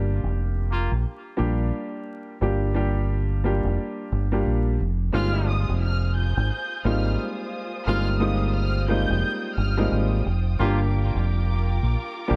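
A swung hip hop groove in 4/4 at 88 BPM sets a gritty, reflective mood, with a dark, mellow grand piano colored by cassette tape riding over a round, up-front fingered dub bass as the harmony moves from Gm7 to Ab6 and back. After one brief early stab, a vintage trumpet section returns at 5.1 seconds with light-vibrato stabs and tape echo. At 5.2 seconds a lush bowed violin section carries the high melody, and a smooth string section holds sustained chords, all set in studio reverb and vinyl crackle in this excerpt.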